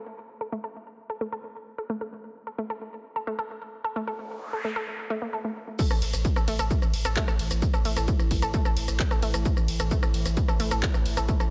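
An overdriven, layered electronic kick drum sits up front and hammers through the drop at 5.8 seconds in this intense, relentless peak-time techno cut at 131 BPM, joined by a punchy analog drum machine re-recorded in a large room with crash, ride, hi-hat, rim click, shaker and handclaps. Before that, a nasal, wave-folded analog pluck riff carries a filter sweep on its arpeggio from the opening, with a noise sweep leading into the drop. Underneath, a thick, saturated sub bass on A and a moody, mellow ambient pad drone fill out the low end, with sidechain pumping on the pluck, bass, pad and the drum machine's cymbals, hats and percussion.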